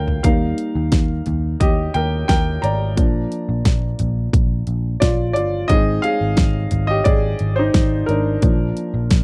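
A warm baby grand piano sits up front from the very start, its natural tone and short sustain carrying this hopeful slice of piano-driven pop cut from a longer piece. The piano holds the spotlight through the whole 9.2 seconds, moving over chords of Eb, Bb, Ab and back to Bb in a straight feel at 88 BPM. Beneath it, a picked electric bass adds a dark, round, foam-muted low end. A pop drum kit joins at 0.1 seconds with hi-hat, toms, a punchy kick and a fat snare, its layered, electronic, produced sound sitting prominently and a touch louder than the other parts. The recording is dry and close, with little reverb, giving the whole a 1970s studio intimacy.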